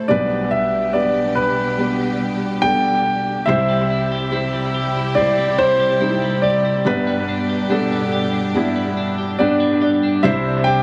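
An echo-heavy mix with spring reverb and small-room ambience frames this heartfelt pop ballad excerpt, where an intimate concert grand carries the melody with audible action noise and long sustain, a soft felt-muted upright piano accompanies and adds a fill at 9.0 seconds, lush bowed strings hold sustained chords with vibrato, and a clean, compressed twelve-string electric guitar enters with arpeggios at 3.5 seconds, dub echo trailing both pianos and the guitar.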